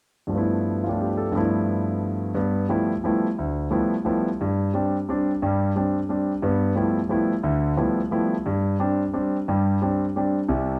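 Jazz waltz in 3/4 at 177 BPM with a swung feel, hypnotic and searching, cut from a longer piece in G mixolydian. A solo concert grand piano plays from 0.3 to 10.8 seconds, intimate and up front with deep bass, a polished tone and audible action noise, moving between G13 and Csus2/G. The room is a large studio with a wet reverb of about 1.1 seconds.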